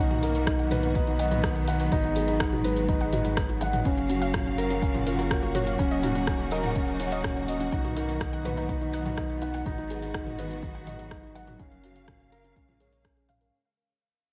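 A felt-muted upright piano, dark and intimate behind a digital delay, carries the riff in this cinematic, moving piano and strings electronica excerpt at 124 BPM, over lush bowed symphonic strings and a round sine sub bass that both pulse with sidechain pumping, a very quiet lo-fi pluck warbling through arpeggios, and a tape-toned deep house kit of hi-hat, rim click and toms joined by a deep electronic kick at 0.5 s, set in light reverb as the drop fades out from 5.8 s over chords moving through Bmaj7, Abm7, Gbmaj7 and Ebm7.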